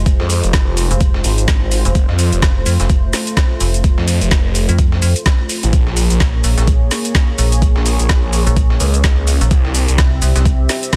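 Bass house at 127 BPM in F harmonic minor, aggressive and swaggering, built on an up-front overdriven knocking electronic kick, a garage kit with woody snare and metallic hats, a gritty sampler-style soul kit tucked in the background, two pumping basses (a metallic, decaying FM bass and a swirling, thick phased detuned saw bass), and a deep, moody chorused pad holding sustained chords over Fm, F, Bbm7 and C, all pressed into a dense, heavily limited modern master.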